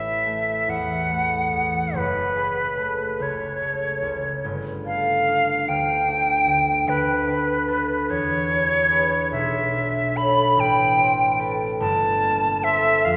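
Impressionist classical duo for flute and harp, a luminous, pastoral passage in A mixolydian that drifts rubato at a slow 48 BPM in 6/8, cut from a longer piece. Up front, a silver concert flute carries the melody with an airy, bright, tongued tone and vibrato. The mellow, ringing fingerpicked harp accompanies through colored chords such as F#madd9, Bm11 and Gmadd9, all bathed in the wet 2.0-second reverb of a church or concert hall.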